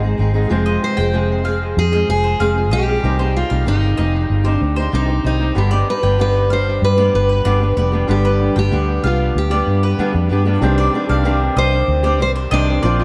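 Pop excerpt at 95 BPM, wistful and reflective, where a picked steel-string acoustic guitar carries the melody with audible finger squeak over a fingerpicked steel-string acoustic guitar, a dark, round, foam-muted vintage electric bass up front, bright double-string mandolin arpeggios and a very quiet concert grand piano with audible action noise, the guitars and mandolin soaked in dub echo within an echo-heavy mix as the chords move from Ab through Fm, Cm and G before a shift to Cmadd9 at 10.6 seconds.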